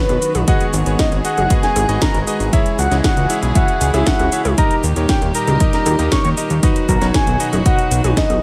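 A fat, detuned sawtooth analog bass with tube saturation drives this melodramatic, bittersweet italo disco excerpt in G# minor at 117 BPM, joined by a punchy electronic kick and a house kit with cracking snare, metallic hats and cabasa, while clangy electric grand piano stabs enter at 0.5 seconds over G#m7, C#m and D# chords, a distant bowed chamber string section floats beneath, and a soft, round octave-layered synth lead sings the melody through chorus, tremolo, cassette tape and digital delay.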